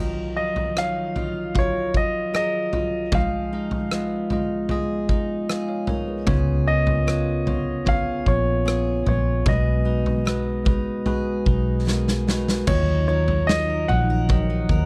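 This pop ballad excerpt carries an emotional, longing mood at an unhurried pace in a straight four-beat feel, recorded dry and close in a 1970s-style studio. A bell-like tine electric piano with subtle chorus sets out the accompaniment up front from the start, joined by a bright, full-bodied picked steel-string acoustic guitar playing arpeggios in the background. Almost at once a concert grand piano with audible action noise and long sustain carries an intimate, polished melody high in its register, while a huge arena drum kit with a punchy kick, medium-tuned snare, rim clicks, toms and crash cymbal sits natural and up front. A dark, round, foam-muted fingered electric bass enters at 6.3 seconds, and a drum fill leads into a new section at 12.7 seconds, where a shimmering, retro pulse-width pad with slow attack and chorus adds sustained chords in the background. The harmony moves through minor colours, including an added-ninth minor chord and a half-diminished seventh, before returning to its opening chord as the new section begins.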